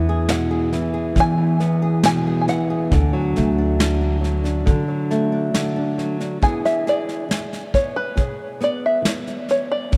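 A steady, straight 4/4 pulse at an unhurried pace carries this gentle acoustic folk passage, which is taken from a longer piece. A soft brush kit sits up front with a punchy kick and a medium-tuned snare, while a fingerpicked nylon-string guitar, small-sounding and close, supplies the accompaniment over chords moving from E to D and back to E. An upright bass played pizzicato adds a woody low end until it drops out at 6.4 seconds. Above them, a fingerpicked open-back banjo carries the melody with a mellow, twangy, plunky tone, and from 6.4 seconds it takes a solo as the music shifts into a new section. The whole ensemble is set in a vast, echoing cathedral-like space, lending the warm playing a long, airy tail.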